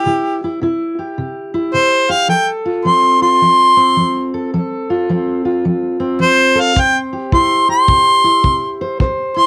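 Acoustic country blues with a laid-back, gritty mood, this short excerpt from a longer piece moves at 107 BPM in 4/4 with a swung eighth-note feel in C major, tuned slightly sharp to A4 = 444 Hz. A harmonica carries the melody as a solo throughout, sitting up front with a soft attack, light vibrato and scooped notes in a jazz-inflected style. Beneath it, a fingerpicked steel-string jumbo acoustic guitar provides dark, woody, full-bodied accompaniment, its old strings adding to the earthy character. At 6.8 seconds a dark, smooth, punchy kick drum with brushes joins in and plays until 9.2 seconds, as the harmony returns to C after a long stretch on F. Captured as a home recording on cassette with light reverb, the sound carries a homespun, lo-fi charm.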